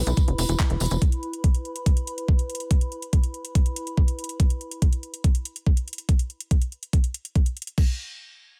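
A tight, ring-modulated sawtooth sequencer bass and a detuned, warbling lo-fi pad with chorus, reverb and sidechain pumping open this hypnotic psychedelic trance excerpt at 142 BPM over an E5 chord, joined at once by a jingly tambourine, a garage kit of crash, handclaps and metallic hats, and an up-front knocking electronic kick, with the bass and tambourine stopping at 1.0 s and the pad at 4.4 s while the kick and kit drive on through 7.9 s in a digital ambience.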